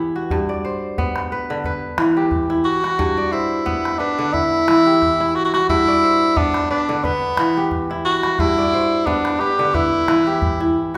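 West African traditional music, flowing and joyful, cut from a longer piece: a bright, ringing kora plays fingerpicked arpeggios up front over a small acoustic calabash, while a clear tenor saxophone enters at 2.6 seconds with a present, jazz-style solo melody, all set in the wet reverb of a recital hall as the harmony rocks between G and E minor.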